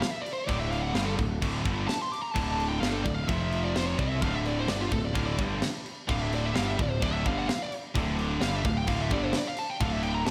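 Relentless and heavy, this heavy metal passage, cut from a longer piece, drives forward in a straight 4/4 with a big arena sound and a moderate studio reverb. A dark, high-gain lead guitar carries the melody as a solo from the very start, sitting up front with distortion and a slapback echo. The tight metal drum kit plays alongside it from 0.0 seconds, a gritty, saturated acoustic kit with a high-tuned snare, tight kick and crash cymbal, its top rolled off. At 0.5 seconds three distorted guitars join on the riff in the background: a bright, picked high-gain part with slapback echo, a tight part with distortion, and a very quiet, double-tracked sludgy part with an overdriven edge. A growly fuzz picked electric bass enters with them, direct and amped, overdriven and pushed up front beneath the guitars. The harmony moves between D5 and F5 chords.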